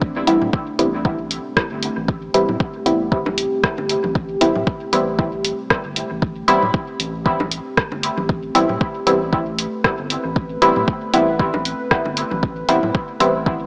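Dub techno at 116 BPM in A minor with a light swing, deep and hazy, resting on a single Am7 chord through this short cut from a longer piece. A moody sawtooth pad with chorus and its own reverb sustains above a round, wave-folded analog bass, both pumping against an overdriven, up-front kick, while a muted, detuned chord stab with chorus, phaser and dub echo sits forward from 0.3 seconds. A punchy analog drum machine carries hi-hat and rim click through dub echo, and layered congas and bongos echo in the background, all set in a lush hall reverb with a small-speaker character.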